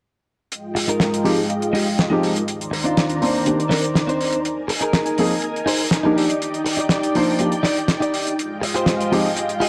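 A dark, mellow concert grand piano sits up front, laying down smooth accompaniment with tape echo in this feel-good, groovy nu-disco excerpt, while a lush string machine holds sustained chords through phaser, ensemble chorus and a filter sweep. A damped 70s drum kit with a fat, dry snare and hi-hat drives the straight 4/4 groove, and a bright, clean direct-recorded electric guitar plays a picked riff soaked in chorus and tape echo. The chords move from Fm9 through Cm9, Bb7sus4 and Ebmaj7 before returning to Fm9 at 8.4 seconds, all captured in a small room with a gritty, cassette-tape character.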